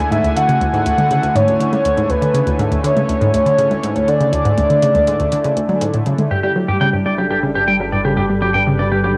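A breathy, flute-like synth lead sings over a thick, warbling unison pad and a round, detuned analog pluck riff on Dadd9 in this cosmic, luminous excerpt of sequencer-driven ambient space music at 121 BPM in D lydian, with electronic hi-hat and congas adding metallic shimmer through tape echo until a twangy clean electric guitar takes up arpeggios over Gadd9 at 6.3 seconds and an evolving analog drone enters at 7.5 seconds, all bathed in a small, wet room and the hazy grain of a home cassette recording.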